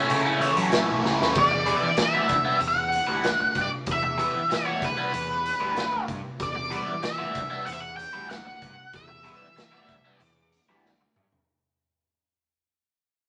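A dark, fuzzed-out octave lead guitar carries the melody over a bright, double-tracked stack guitar riff with overdrive and phaser, opening this hypnotic, mysterious psychedelic rock excerpt on an A chord before settling onto Em7 at 1.3 seconds. A round, overdriven picked bass and a gritty garage drum kit, with a punchy kick, medium-tuned snare and a rolled-off top in a pumping stone room, join almost at once, while wah and distortion colour the up-front lead. Drum fills mark 1.0 and 10.8 seconds as the excerpt fades out from 1.3 seconds onward under moderate studio reverb.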